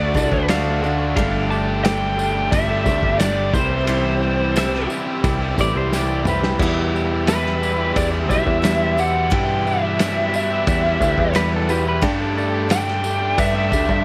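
A straight 4/4 pulse at 88 BPM drives this nostalgic, hopeful folk rock and heartland rock excerpt in G major, with a loose indie drum kit of muffled, dark cymbals and a punchy kick, a growly, up-front picked electric bass, a jingly close tambourine, and a drum fill at 5.9 seconds leading into the Emadd9 chord. A dark, distorted bluesy lead guitar carries the melody over a bright, double-tracked crunchy guitar riff, a picked steel-string acoustic guitar with finger squeak sitting in the background, and very quiet tonewheel organ chords with key click and slow rotary. A clean pedal steel guitar with volume swells and slide adds a second line until 7.1 seconds, returning briefly at 11.4 seconds, while a vintage grand piano with short sustain plays faintly beneath it all under light reverb.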